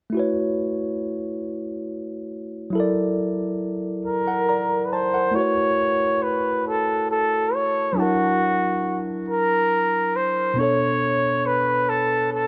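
A moderate plate reverb with a long 3.6-second tail wraps this short, intimate R&B excerpt, cut from a longer piece, in a soft halo. The tempo is a slow 46 BPM in a straight 6/8, set in A major. A worn, slightly out-of-tune tine electric piano opens the accompaniment at 0.1 seconds, sitting close and direct with a clean, warm tone as it moves through A6, F#7alt and Bm7 harmonies. At 4.1 seconds a breathy flugelhorn enters up front with the melody, its soft attack, scooped notes and whispered, vintage character giving the line a tender, pop-style solo voice. The second section begins at 5.4 seconds, returning to the same chord colours before settling on Bm7, and the mood stays intimate and tender throughout.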